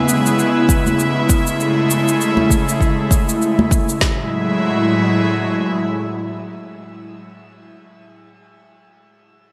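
Relaxed and wistful, this short sunset chillout fragment, cut from a longer piece, drifts along at 99 BPM in 4/4 with a 57% swing on the sixteenths, set in F# minor and tuned to A4 = 439 Hz. An airy, breathy pad sits up front from the start, its soft blend of triangle, sawtooth and a noise layer rising slowly and hanging on long tails through chorus and shimmer reverb as the chords move from C#m7 to Amaj7 and then open onto F#m9. A layered electronic shaker joins almost at once, and at 0.7 seconds a deep house drum kit arrives up front with a deep kick and a woody snare, dressed in studio and gated reverb. Bright acoustic congas, close and dry with soft hands, tap along in the background before the percussion falls away, leaving the pad alone from 4.2 seconds until it ends at 7.2 seconds. The whole piece is steeped in a lush hall reverb and carries a gleaming 1980s-style digital sheen, with lossy compression artefacts.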